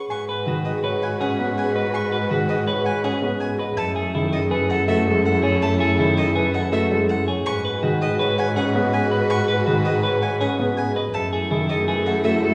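A ringing, fingerpicked Celtic harp carries the melody from the very start of this classical minimalist pattern music, joined at once by a focused, bowed violin spinning arpeggios above it. Almost immediately a distant oboe with a soft attack adds a second line, while a lush symphonic string section holds sustained chords in the background and an up-front double bass bows the low notes with vibrato and portamento. A bright, twangy electric guitar picks its own arpeggios from 0.3 seconds, and a mellow, vintage-sounding baby grand piano enters at 0.5 seconds with accompaniment. The music moves in a five-beat metre with a straight feel, alternating between G#m7 and F#m11 in a pattern that sounds both urgent and meditative. A reverberant recital-hall acoustic surrounds the ensemble, giving the layered patterns a church-like space.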